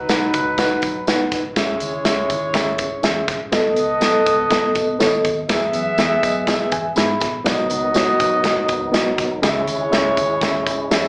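Urgent and passionate, this uptempo 1960s-style soul excerpt at 122 BPM heard as a live club gig through a small PA pairs a distant, roomy horn section and a reedy, worn electric piano with fast tremolo and slapback echo up front, over punchy acoustic drums, a dark, round muted bass and a jingly tambourine, as the piano takes a fill at 6.0 seconds before a fat tonewheel organ with slow rotary speaker joins at 7.5 seconds over chords moving from B through C#m, B7 and E.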